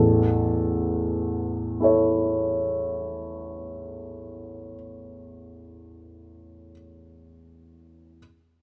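Serene and dreamy, this brief romantic nocturne fragment for solo upright piano drifts in A major at a slow, rubato 30 BPM in 9/8, its woody, polished tone sitting close and present across a range from A1 to C#5 within a moderate recital hall reverb over its 8.2 seconds.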